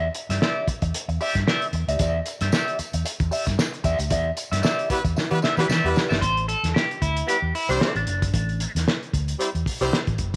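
Funky and hypnotic, this 114 BPM funk excerpt in A minor swings lightly on the sixteenths, with a bright, twangy electric guitar at the edge of break-up running through wah and harmonic tremolo over a dark, round, foam-muted fingered bass and a cloth-damped, thuddy drum kit with a fat snare, tight kick and gritty, rolled-off top. A jingly tambourine sits in the background from 2.0 s, a clear horn section with light vibrato and octave doubling enters at 4.9 s, and the band hits an accent capped by a drum fill. At 6.2 s the harmony moves from Em7 to Am7 as a clean electric guitar solo takes over, all in small room ambience with light reverb.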